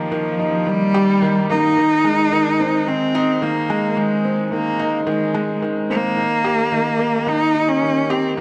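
A straight 4/4 pulse at 109 BPM carries this short, moving and intimate fragment of electronica, which builds for its first 1.8 seconds before dropping into its main section, moving from Eb to Abadd9/Eb and back to Eb at 6.2 seconds. Up front, a felt-muted upright piano plays a mellow, hushed riff with audible action noise, while a rich, nasal cello carries the bowed melody with vibrato, portamento and a boxy, expressive voice. Both parts are coloured with tape echo and sit in a wet echo chamber reverb.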